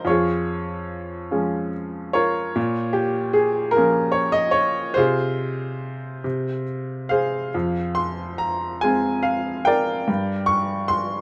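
Moving in a slow, flexible 6/8 at around 46-51 dotted-quarter beats per minute, this brief classical passage breathes with a rubato feel that lets each phrase linger. A lone upright piano carries the whole of this lyrical fragment in F minor, reaching from F2 up to Db6 over its roughly 11.2 seconds. The instrument sounds bright and woody, sitting up front and intimate, with its action noise clearly audible, so the listener seems to sit beside the keys. The harmony drifts from Db/F through Bbm and Fm/C to Fm, then turns toward Gm at 10.1 seconds as the clip breaks off mid-thought, cut from a longer piece. Light reverb and a dark, warm production soften the edges, leaving a tender, warm mood.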